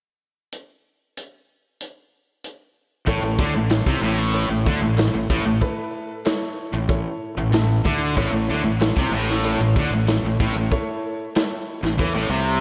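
A straight 4/4 pulse at 94 BPM opens this sunny, swaggering classic rock excerpt in A major, with a vintage drum kit of punchy kick, medium-tuned snare and hi-hat playing alone until 3.1 seconds, when two bright, picked electric guitars, one distorted and one overdriven with spring reverb, join a growly fuzz fingered bass on a low riff, a woody upright piano with slapback echo adds accompaniment and a fill at 7.2 seconds, and very quiet, crisp group handclaps enter at 3.7 seconds, all in a big, lush, arena-sized hall.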